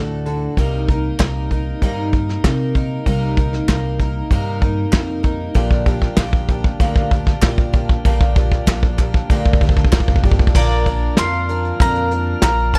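A dry, close-sounding cut from a longer indie folk piece, wistful and yearning in a straight 4/4, opens with a shimmering, octave-doubled twelve-string and a woody pizzicato upright bass, alongside a brief touch of fingerpicked steel-string guitar that fades by 0.6 s, as an up-front brushed drum kit with a punchy kick and rolled-off top comes in. A faint, piping tonewheel organ through a rotary speaker holds sustained chords beneath crisp group handclaps in the background, while the arrangement builds under a drum fill. At 10.6 s a bright, double-strung bowl-back mandolin takes the melody, and a mellow, bell-like glockenspiel played with rubber mallets adds a second line.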